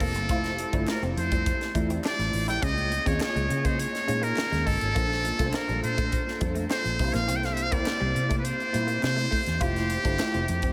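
Polished 1980s jazz-funk pop with a glossy, urban mood, led by a breathy, buzzy trumpet with a metal mute carrying the melody up front over a worn, slightly out-of-tune tine electric piano with ensemble chorus, a dark semi-hollow electric guitar riff with lush chorus in the background, a round, foam-muted fingered electric bass, a crisp fusion drum kit with a high-tuned snare and punchy kick, and a barely audible group handclap from 0.9 seconds, all bathed in huge, dreamy reverb.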